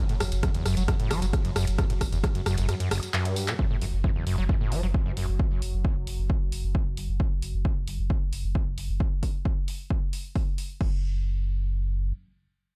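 Driving, intense peak-time techno that opens on a drop, where a screaming, squelchy sawtooth acid riff, distorted and chorused with digital delay, pumps against a thick, saturated triangle sub bass and a punchy, up-front layered kick, while an overdriven analog drum machine adds hi-hats, handclaps, rim clicks, tambourine, ride and crash over a dark, warbling, detuned pad drone set back in its own reverb, until the acid line stops at 5.3 s and the sub bass carries on to 12.1 s.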